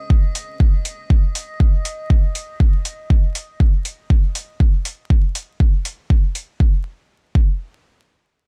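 A deep, layered electronic kick drum sits up front through this short dub techno excerpt at 120 BPM, its punch carrying the faint character of a small room, joined by analog hi-hats with a metallic edge from 0.4 seconds. Opening the passage, a quiet, eerie FM drone rings on Eb5 with a metallic, inharmonic tone, slow attack and long release, softened by chorus and reverb and breathing with sidechain pumping until 2.6 seconds. The nocturnal, cavernous mood is framed by a digital ambience that feels dry and gritty, flecked with vinyl crackle.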